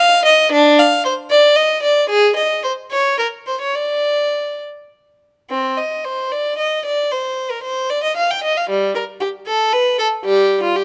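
Closely placed microphones and a light reverb capture this recording in fine detail, putting a single violinist up front. It is a brief classical fragment in the manner of a baroque suite movement for unaccompanied violin, set in C minor and 6/8 at roughly 64-78 BPM counted in dotted quarters. The mood is grave yet flowing, and the rubato lets the pulse give and stretch freely. The bowed instrument has a rich, reedy, period-style gut-string character as it moves between G3 and G5. The opening material runs to 5.5 s and then returns, carrying the short passage to its close at 10.8 s.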